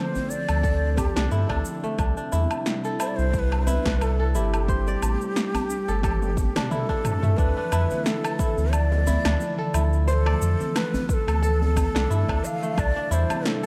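Meditative, earthy organic downtempo in D minor at 89 BPM with a light 16th-note swing, where a breathy, vibrato-laden ney carries the melody with tape echo over a crisp, ringing kora's echoed arpeggios and an airy, detuned pad that pumps under sidechain, while a faint glassy harmonics texture drifts until 7.4 seconds, a round sub bass sits up front, an overdriven electronic kick and a deep house kit of shaker, punchy snare, toms and woodblock drive the groove with a fill from 6.0 seconds, and a distant djembe with metal rattles murmurs behind, all in a dark production lit by light digital reverb.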